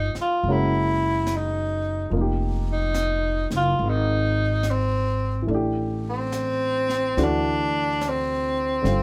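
A swung eighth-note feel in 4/4 carries this intimate, late-night jazz ballad fragment, where a clear tenor saxophone with a soft attack and light vibrato takes the solo melody up front, a baby grand piano accompanies with a warm tone, short sustain and audible action noise, a woody, thumpy pizzicato upright bass on gut strings sits close, and an airy brushed kit with a high-tuned snare and hi-hat stays in the background from 0.1 seconds, all in a lightly reverberant room as the harmony moves through Gb13, Fm9, Am7 and D7.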